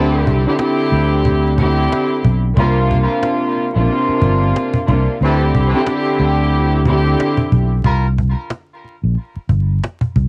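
A dry, crackling home cassette recording carries this moody, dark boom-bap hip-hop fragment at 91 BPM with a swung sixteenth feel, where an up-front studio string section with a reedy gut-string tone and smooth, filtered top plays suspended D and C chords until 7.6 s, a distant jazz-style horn section adds tight, tape-echoed stabs in the background, a round, punchy fingered electric bass anchors the low end, and a woody, close cajon played with hard hands enters at 0.3 s and carries on with the bass through the break from 7.8 s.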